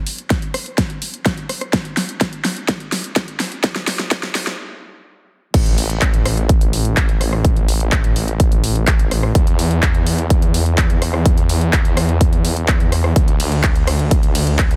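This festival progressive house excerpt opens with a euphoric build-up in straight four, where a big-room dance drum kit plays a fill over a filter sweep while a punchy, overdriven electronic kick sits up front. The kit is layered and produced, with a huge snare, handclaps, hi-hat, rim click, ride and crash cymbals, all pushed through overdrive. At 4.6 seconds the music stops briefly, and at 5.5 seconds the drop hits as a thick, menacing detuned saw bass enters with sidechain pumping. The bass is saturated and beating, with a fast attack and sustained notes that blend sawtooth and sine tones. The sound is dry and close, and the powerful drop runs until the excerpt ends.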